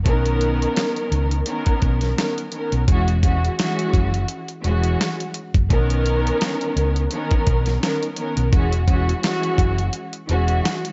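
Lush, bowed symphonic strings with vibrato sit up front through a tape-worn, filtered haze, over a gritty, compressed sampler-style soul kit with a thumpy kick and a medium-tuned snare and the dark, round tone of an amped hollow-body bass, giving this short, dry, confident boom-bap hip-hop cut from a longer piece a soulful swing as it moves between Bmaj9 and E69.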